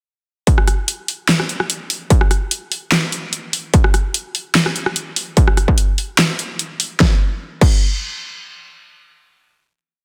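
A distorted, layered electronic kick drives this heavy, chaotic dubstep piece at 147 BPM in a half-time 4/4 feel, entering at 0.5 seconds together with an up-front drum kit of huge snare, bright closed and half-open hats, rim clicks, handclaps and crash cymbal through a drop that gives way at 7.0 seconds to a final hit, all set in light reverb under a dense, heavily limited modern master.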